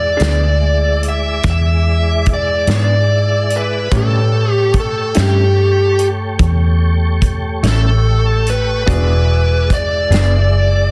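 A slow 12/8 blues at 48 BPM in E mixolydian, this swaggering, soulful fragment moves from E7 to A7 at 3.9 s and back to E7 at 8.9 s, with a dark, overdriven lead guitar carrying the melody up front over a round, foam-muted fingered bass, a punchy-kicked country drum kit with soft clipping on the kick, a tonewheel organ holding chords through a slow rotary speaker with chorus vibrato and key click, a lo-fi, slightly broken-up guitar with harmonic tremolo in the background, and a very quiet baby grand piano, all set in light reverb and small-room ambience under a dense, heavily limited master.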